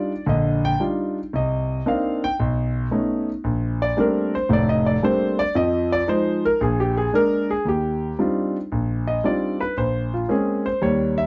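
Swung eighth notes in 4/4 give this short cut from a longer solo jazz piece its swinging, playful lilt. A lone concert grand piano carries everything, reaching from deep bass up into its upper middle range through lush extended chords such as Ebmaj9, Cm9 and Bbmaj13, then settling into a fresh tonal center at 7.7 s. The dry, close 1970s-style studio sound keeps the piano intimate and up front, with its natural tone and the noise of its action clearly audible.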